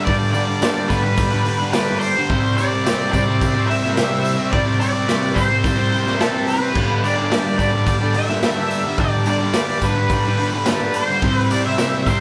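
A straight 4/4 beat at 108 BPM from a raw, punchy garage drum kit with dark cymbals and a saturated, up-front sound drives this gritty, menacing garage rock excerpt, where a bright, double-tracked fuzz guitar riff and a dark octave-fuzz lead melody churn over G and C chords, a buzzy vintage combo organ with light vibrato holds sustained chords in the background alongside a jingly tambourine, and the whole band plays live in one room with a moderate large studio reverb.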